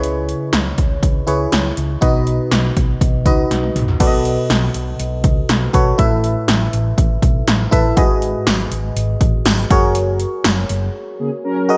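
This 1980s-style pop excerpt moves at 121 BPM in a straight 4/4, with a nostalgic, glossy mood and a bright digital sheen bathed in moderate plate reverb. A glassy, bell-like FM electric piano treated with chorus sits up front, carrying the accompaniment through chords from C#m7 and B to B7, Asus2, G#m7 and F#add9. Beneath it a round, dark hollow-body short-scale electric bass, played fingered, holds the low end, while electronic pad drums with a punchy kick, metallic hats and gated reverb on the snare and toms drive the groove, marking the turn into the second section with a fill at 3.5 seconds. A jingly tambourine joins in the background from 8.5 seconds, ahead of a band accent starting at 10.0 seconds. Mellow, brassy synth stabs with chorus arrive at 11.2 seconds to close the passage alongside the electric piano.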